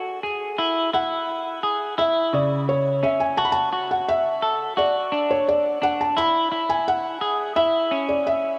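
Dreamy and ethereal, this brief dream pop excerpt sets a soft, intimate felt-muted upright piano melody up front against clean, scooped arpeggios from a semi-hollow electric guitar with subtle chorus, both parts bathed in shimmer reverb and tape echo within a huge ambient space as the harmony drifts between C#madd11 and Dadd9.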